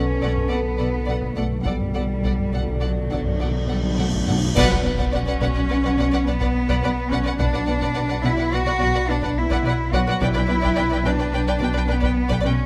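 This is a cinematic suspense film score, mysterious and uneasy, moving at 106 BPM in 5/4 in B minor, cut from a longer piece. Chamber strings carry it, with bowed violins playing a focused melody and an expressive second line over smooth, even violas and a background of distant studio double basses. An up-front cello section holds the bass while a second, softer cello section plays a riff with portamento, all resting on a deep, sustained sub bass drone on B1. A very quiet taiko ensemble plays underneath on hard sticks throughout. A dark French horn section holds chords until 4.2 seconds as hard-mallet timpani play a fill, and a huge cymbal swell builds from 3.3 seconds into a band accent and impact at 4.6 seconds, marked by bright clash cymbals and concert bass drum. From 3.1 seconds a very quiet, bell-like celesta adds a delicate texture, with the timpani returning briefly at 10.2 seconds. 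The close, detailed sound sits in moderate scoring-stage reverb and carries some lossy compression artefacts.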